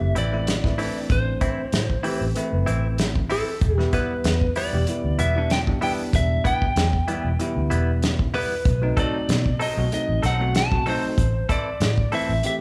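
A lightly driven lead guitar carries the melody in this smoky, soulful straight-eighth soul blues excerpt, its picked, slightly broken-up tone compressed and sitting between A4 and A5. Set at 95 BPM in E minor with a gentle swing on the 16ths, the short passage moves from Am to Em and then to B7b9 before returning to Am at 11.2 seconds. A bell-like tine electric piano supplies clean accompaniment, while a direct-recorded electric guitar adds bright, twangy stabs from 0.2 seconds. Underneath, a vintage fingered bass gives a dark, round, foam-muted low end, and a soul drum kit with a fat snare, tight kick and hi-hat sits up front with a rolled-off top. The band plays live in one room, wrapped in a moderate large studio reverb.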